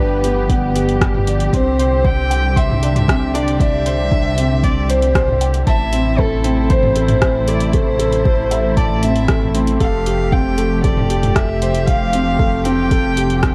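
A dark, warm production with light reverb and digital ambience frames this tender, luminous piano and strings electronica, cut from a longer piece and moving at 116 BPM in C major through G7, Csus2, Am and Fadd9. A mellow grand piano riff with delay and shimmer reverb sits beside a woody, distant solo violin melody, also with shimmer reverb, while a veiled, con sordino string section holds sustained chords with sidechain pumping and shimmer reverb. Underneath, a rumbling, detuned saw bass sits saturated and up front with sidechain pumping, a tape-toned deep house kit of hi-hat, rim click and toms enters at 0.2 seconds, and a deep, layered electronic kick, re-recorded in a small room, arrives at 0.5 seconds.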